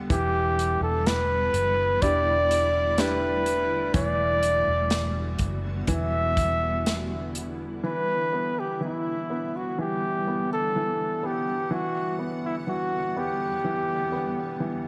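A moderate echo-chamber reverb surrounds this slow, heartbroken pop ballad, cut from a longer piece. An up-front flugelhorn carries the melody with a light vibrato and a close, warm tone, while a clear, polished baby grand piano supplies the accompaniment underneath. A granular cloud pad holds sustained chords throughout, its blurred, detuned texture slowly evolving within its own reverb. In the opening stretch, a dark, round, foam-muted electric bass and an airy acoustic drum kit with a punchy kick, medium-tuned snare and hi-hat set the pulse, and both drop out by about 7.8 seconds. From there, the flugelhorn, piano and pad carry the melancholic mood on their own as the harmony moves between Em7 and Gmaj7/E.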